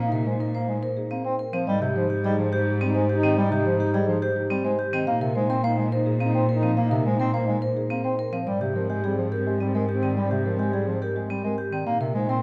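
Minimalist classical pattern music in 3/4 at 106 BPM, this hypnotic yet bright passage in Bb mixolydian is cut from a longer piece and cycles between Bb7sus4, Fm9/Ab and Abmaj9#11. A woody, rounded marimba with soft mallets carries the melody while a metallic, ringing vibraphone with hard mallets and motor vibrato spins arpeggios. A distant, roomy bass clarinet supplies accompaniment, a French horn with light vibrato adds a second line from 0.1 s, and a rich, focused bowed cello anchors the bass up front, all set in a dark, warm recital hall sound with moderate reverb.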